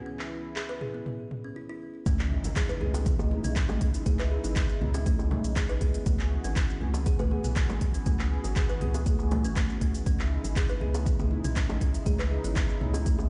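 Heard through a big sound system in a bare stone room, with light reverb and a dull top end, this excerpt of spiritual afro house in C# minor at 120 BPM opens with a smooth, detuned sawtooth pad, woody kalimba arpeggios trailed by digital delay, and a deep house kit of handclaps, smooth hats, shaker and toms, all under a filter sweep that leads to a short break. At the drop at 2.1 seconds a deep layered electronic kick, a round, nasal analog bass and warm congas arrive with a very quiet impact, bongos with tight, high-tuned hands join at 2.5 seconds, and sidechain pumping moves the pad, kalimba and bass. The chords pass from E/C# to C#m7, E and back to C#m7.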